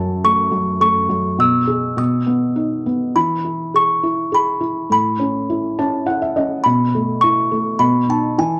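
A worn, warbling cassette sound colors this short children's piece, its pitch drifting under light reverb. The mood is gentle and sleepy, moving in a rubato 3/4 at about 103 BPM in E major, and the fragment is cut from a longer piece. A delicate, tinkling music box carries the melody up front, its plucked tones small-boxed, vintage and slightly out of tune. Beneath it, a felt-muted upright piano gives soft, dark, intimate accompaniment with short sustain and audible action noise, and it adds a brief fill from 5.5 to 6.6 seconds. The harmony moves from F#m through E/B, B, E and Aadd9 before settling on B7sus4 and B7, leaving the phrase hanging at 8.6 seconds.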